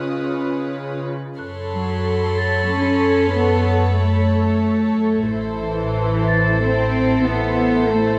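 In a dark, roomy scoring-stage sound, this eerie, mysterious suspense cue in 3/4 sets a pure, floating violin melody above lush, woody violas in the background and up-front, distant cellos, all bowed sul tasto, while a bell-like celesta rings with airy sparkle, intimate chamber violins shimmer high until 4.9 seconds, and from 1.4 seconds a close second violin line and dark, vibrato-laden double basses join as the harmony settles from C#7 to F#m.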